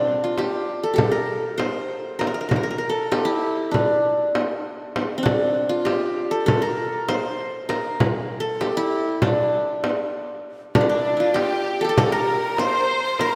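Pulsing in 9/8 at 196 BPM counted in eighths, this passionate excerpt of a Turkish makam ensemble in D makam ussak places a bright-edged, plucked qanun up front, carrying the melody through tape echo over a small frame drum that enters at 0.4 s. Near the close, at 10.7 s, a clear symphonic violin section with intense vibrato joins as a distant second line, and a breathy, mellow ney soon follows in the background. A lush hall reverb soaks the mix in a dreamy wash.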